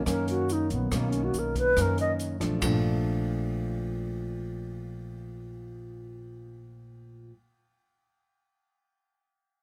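A mellow, reedy alto flute leads this short bossa nova excerpt from up front, its airy, tongued phrases carrying gentle vibrato and rolled-off highs. The mood is romantic and sunny, moving at 141 BPM in a straight 4/4 in Bb major, with the harmony shifting from Bmaj9 to Bbmaj7. Beneath the flute, a full-bodied nylon-string guitar with fresh strings is thumb-plucked in a classical manner, with finger squeaks audible, while a woody, thumpy upright bass on steel strings is played pizzicato. An acoustic jazz kit with dark cymbals and a boomy kick, heard in a small room, sits with a grainy, bright tube shaker in the background, and both stop at 2.7 seconds. Guitar and bass carry on alone until about 7.4 seconds, set in light reverb.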